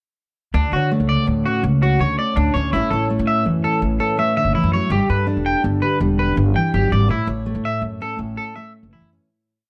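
A slightly broken-up, twangy electric guitar plays a patterned arpeggio in eighths, touched with subtle chorus and slapback echo, over a woody, syncopated pizzicato riff on upright bass and a full-bodied, syncopated fingerpicked steel-string acoustic guitar with audible finger squeak, all up front in a dry, close 1970s-style small room, making a short, joyful, sunny highlife piece in 12/8 at 110 BPM in D major that moves through Dmaj7, A, G and A before fading out from 7.1 seconds.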